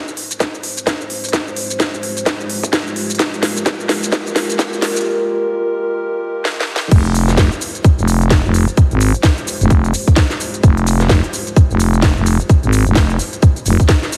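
A tight, up-front electronic kick drives this swaggering, gritty bass house excerpt alongside a garage kit of cracking snare, crisp hats, shaker and crash, both tape-warm and re-recorded in a large room, while a deep, nasal, detuned analog pad holds dark Fmadd9 chords with chorus and sidechain pumping under a filter-swept build-up and drum fills. At 6.9 seconds the drop lands and a growling, thick FM bass enters low with tube saturation and its own sidechain pumping. The whole track carries a heavily compressed radio sound with light reverb and lossy artefacts.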